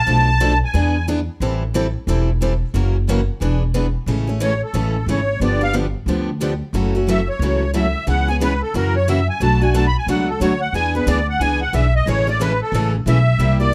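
Swinging and charming, this snippet of acoustic jazz manouche sets a reedy, shimmering musette accordion up front, briefly at 0.0 s and then soloing from 4.4 s, over a woody, thumpy pizzicato upright bass on gut strings and two picked steel-string acoustic guitars, one a bright, boxy parlour and the other a full-bodied dreadnought with fresh strings, all captured close and detailed in light reverb.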